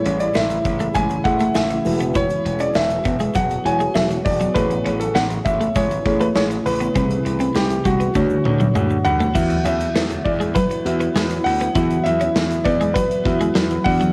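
Over a straight 4/4 groove from a big rock drum kit with punchy kick and bright cymbals, plus a faint, grainy tube shaker, this glossy, uplifting 1980s-style pop excerpt sets a clear concert grand piano melody against a soft, round FM electric piano and a shimmering, ethereal ambient pad in the background, while a twangy twelve-string electric guitar riff with lush chorus and an overdriven, gritty slap bass drive it along, all with a light cassette-tape home-recording haze, and a drum fill at 8.2 seconds joined by an electric piano fill lifts it into a new section at 9.4 seconds.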